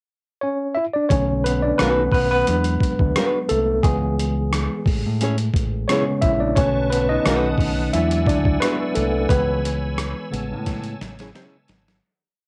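Smooth and late-night, this short neo-soul R&B piece moves at 88 BPM with a lightly swung 16th feel, opening on a worn, slightly out-of-tune tine electric piano that plays rhythmic chords through its cassette tape haze before taking a solo from 1.1 s over a progression of Bm9, B7, E9, C#m7 and Amaj7. A gritty, pitched-down sampler-style boom bap kit with a thumpy kick and ghost notes joins a round, dark fingered bass full of slides and chromatic approach notes, while a full-bodied fingerpicked nylon-string guitar adds sparse, clipped chords. A reedy, lightly overdriven tonewheel organ pad with chorus vibrato enters softly at 6.6 s, and the home-cassette recording with light reverb fades out from 9.3 s, closing with a drum fill from 10.7 s.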